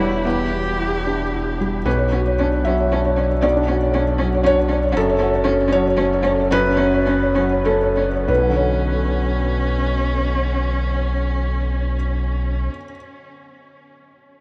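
Reflective and melancholic, this short excerpt of neoclassical piano and strings unfolds in a rubato triple metre, cut from a longer piece. A felt-muted upright piano carries the accompaniment up front, soft and intimate with audible action noise and a subtle chorus, running from the start until 13.0 seconds. Beneath it, a pure sine sub bass sits deep and clean, its smooth, sustained tones giving a dark foundation. A single bowed cello takes the second line from a distant place in the sound, rich and expressive with vibrato and portamento, touched by delay. The harmony moves from E minor through B minor add nine and F-sharp minor before returning to B minor add nine at 8.3 seconds, and the music slows between 4.2 and 8.3 seconds. A huge ambient reverb soaks the whole mix, lending it a dreamy, floating haze.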